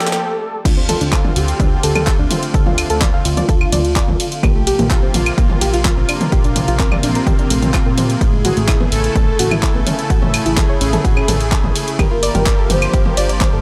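Melodic techno with a dark, driving mood, cut from a longer piece. It opens on a drum fill and a short break before the drop at 0.7 seconds, where a punchy, up-front electronic kick and a funky, sawtooth plucky analog bass with tube saturation join the tape-warm deep house kit of fat snare, handclaps, claves, hi-hat, ride, crash and toms. Over sustained chords from a smooth, warbling analog pad and a very quiet, moody ambient pad texture, a soft round pluck spins dark arpeggios and a bold, nasal brassy pad fires stabs. Meanwhile, a fat, detuned analog lead sings a mellow melody in the background, with the lead, pluck, brassy pad and most of the kit pumping under sidechain in a dry, gritty hardware sound.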